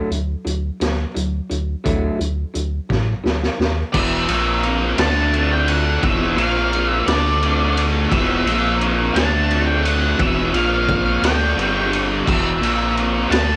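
A gritty, cassette-saturated home recording with a moderate room sound carries this cathartic, dark stretch of quiet-loud alternative rock in a swaying 6/8. It opens on a twangy, slightly broken-up electric guitar through a small old amp picking lo-fi arpeggios, with a deep, full sub bass and a raw garage drum kit sitting up front, its punchy kick, medium-tuned snare and rolled-off top giving a saturated, mid-forward thump. A drum fill from 2.9 seconds pitches the music into the loud half at 3.9 seconds, where the arpeggios stop and two distorted rhythm guitars take over a riff on power chords: a thick fuzz guitar and a heavy high-gain guitar set further back in the mix. Above them, a dark octave-fuzz lead guitar carries the melody high in its range, while the sustained, fast-attacking bass anchors the low end. The chords cycle through E5, A#5 and D5, the tritone-tinged pattern giving the passage its menacing weight before a Dsus4 and G5 briefly shift the color near the end.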